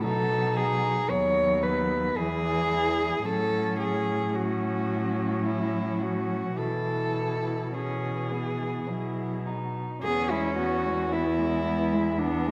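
In a 3/4 with a free, rubato pulse, this lyrical classical fragment for a cello ensemble is cut from a longer piece and sets a warm mood. Four bowed cellos, each a single player with mutes on, share a dark, veiled tone from 0.0 to 12.5 seconds. The melody cello sits close and up front, singing with vibrato and portamento slides, while a second cello traces a softly attacked inner line with its own vibrato and gliding portamento. A third cello fills in the accompaniment from near at hand with vibrato, and the bass cello anchors the harmony with light vibrato, gentle attacks and portamento from a more distant position. The harmony moves gently through E, F#m/A and E/B before settling on E as a new section opens at 10.0 seconds, all held in a moderate scoring-stage reverb.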